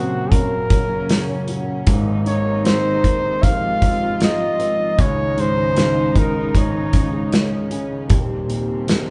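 A tender, hopeful pop ballad fragment opens with a close-miked flugelhorn singing the melody in a jazz style, its vibrato up front, over a felt-muted upright piano whose soft, mellow accompaniment feels intimate. Beneath them, a dark chamber cello section plays a second line sul tasto with a soft attack and light vibrato, while a lush studio string section holds woody, bowed chords in the background. A very quiet flamenco guitar adds thumb-plucked arpeggios, and a loose indie drum kit joins at 0.3 s with a tight kick, a medium-tuned snare and hi-hat, sitting forward in a pumping small-room sound. The harmony moves through Gb, Abadd9, Dbsus2 and Eb in a straight 4/4, and the flugelhorn drops out at 7.7 s while the other parts carry on to the cut at 9.1 s. The band plays together in one room, bathed in a generous studio reverb with a rounded top end.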